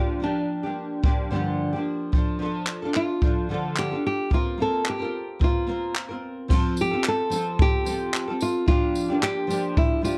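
The recording has the worn, warbling character of old cassette tape, with a gentle pitch drift and a light reverb over it. This is a short cut from a longer acoustic pop piece in F major at 110 BPM in 4/4, with a lightly swung sixteenth-note feel and a heartfelt, sunny mood. Two fingerpicked classical nylon-string guitars sit up front. One carries the melody between D4 and A4 with a warm tone, while the double-tracked accompaniment spans G2 to Bb4, its warm, fresh strings carrying audible finger squeak. At 1.0 seconds a jazz kit played with brushes joins in, recorded naturally in a small room, with dark cymbals, a crash, a boomy kick, tambourine and handclaps. The harmony moves from Gm7 through Dm and Bbsus2, then a new section at 6.5 seconds settles on F before returning to Gm7.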